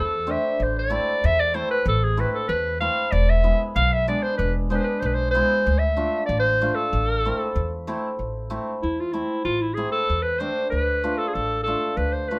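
A small room lends moderate reverb to this festive yet soulful klezmer excerpt, cut from a longer piece and moving in a straight two-beat metre. A clear, punchy clarinet sits up front with light vibrato, carrying the melody in a forceful, vintage, jazz-tinged style. Beneath it, an upright bass with gut strings plays pizzicato, its woody, thumpy tone also sitting forward in the mix. A hammered dulcimer enters at 0.3 s with shimmering, ringing accompaniment placed further back. The harmony moves through A minor, E and D minor, and at 8.2 s the clarinet takes a solo over the continuing bass and dulcimer.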